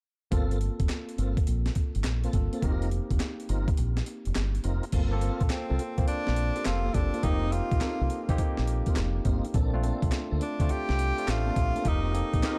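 Slick and confident, this new jack swing R&B excerpt in G minor rides a swung 104 BPM groove. It pairs a gritty, compressed breakbeat sampler-style kit of thumpy kick, snare, handclaps, hi-hat and crash, whose kick drops out from 3.8 to 4.9 seconds, with a round, up-front deep dub fingered bass, a bright, barky tine electric piano, and lightly overdriven tonewheel organ stabs coloured by chorus vibrato, key click, slow rotary speaker and tape echo, all moving through Gm11, F7sus4 and Bbmaj9 chords. A clear, punchy tenor saxophone melody with vibrato enters at 5.5 seconds, and the production stays dark and dry.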